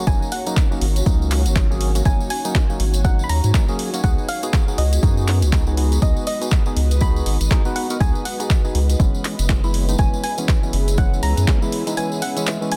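An overdriven, dry and punchy electronic kick drum sits up front in this hypnotic deep house excerpt at 121 BPM, anchoring a 4/4 groove swung at 59% on the sixteenths. Beneath it, a deep, round analog bass built from sine and triangle tones pumps with the sidechain, while an overdriven analog drum machine adds handclaps and hi-hat and a jingly acoustic tambourine rings in a live room. A hollow, nasal organ stab, wave-folded with a noise layer, carries chorus and digital delay, and a soft pluck melody in the upper register sounds through chorus and tape echo. Behind them, a moody, detuned sawtooth pad with a sub octave holds sustained chords, and a cloudy, evolving granular pad hangs in its own reverb, both pumping with the sidechain. The harmony moves from G#9sus4 to C#9sus4 at 4.0 seconds and F#9sus4 at 9.0 seconds before a brief break at 12.0 seconds, set in digital ambience and a dense, heavily limited master.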